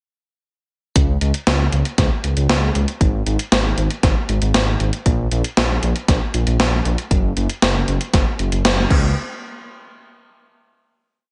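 The recording has a light reverb and a soft-edged top end that stops short of the highest frequencies, giving this short synthwave piece an uplifting, dreamy glow. At 117 BPM in a straight 4/4, tuned slightly sharp to A4 = 443 Hz, everything starts together at 1.0 seconds. A deep, rumbling detuned saw bass drives steady eighth notes between Gb1 and Db2, its unison voices beating against each other with a fast attack and sustained, mellow body. Alongside it, a punchy, layered machine kick with a tape-warm character thumps out the pulse. A sampler-style 80s drum machine sits up front with a backbeat of closed hi-hat, crash cymbal, and a snare washed in gated reverb, re-recorded in a large room for a big, clipped splash. The band lands an accent at 8.6 seconds before the verse gives way to a final hit that rings out from 9.2 seconds to the close.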